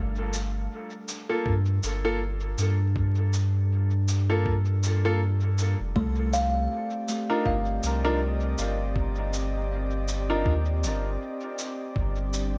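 Ambient dub at 80 BPM in 4/4, with a light swing on the sixteenths, this short cut from a longer piece feels hazy and meditative. A breathy, chorused pad holds sustained chords throughout, fading in as a slow-attack haze over a deep, round sub bass that sits up front as the harmony moves from G7sus2 to Cmadd9 and settles on G5 at 12.0 seconds. A cabasa treated with dub echo and a thumpy electronic kick, both pitched down and muffled as if re-recorded in a large room, carry the groove, with the kick arriving at 1.5 seconds. A clear, woody upright piano with a vintage character punctuates the space with stabs sent into dub echo. A mellow kalimba plays ringing, hollow-box arpeggios through tape echo, briefly at the opening and again from 6.0 to 9.2 seconds. Light reverb and a bed of vinyl crackle give the whole a dusty, lived-in surface.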